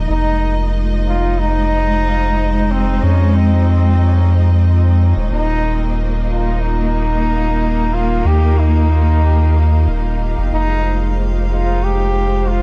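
A round, deep analog bass and a rich, bowed string section open this spacious, hazy piece of ambient dub, cut from a longer work, with a bright solo trombone joining at 0.1 seconds. The bass sits up front, its sine-like tone sustained and dark, while the strings hold smooth, even chords with vibrato in the background. Meanwhile the trombone carries the melody in a classical style, sounding distant and roomy through a dub echo, with a light vibrato. The harmony rests on Ebsus2 before moving to Fm7 at 10.5 seconds, and a gentle swing on the sixteenths gives the groove an unhurried sway. The production is dark and warm, wrapped in studio ambience.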